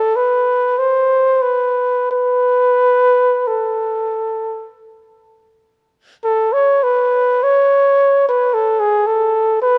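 Lonely and mournful, this short fragment of a classical piece gives a single dark trumpet the whole stage, playing freely in a rubato triple metre from 0.0 to 9.8 seconds. Its tone is shaded with light vibrato and a smooth top, ranging between G#4 and C#5, and the phrase turns to a new section at 6.2 seconds. Close, detailed microphones keep the trumpet up front while a moderate concert hall reverb lets each note hang in the space.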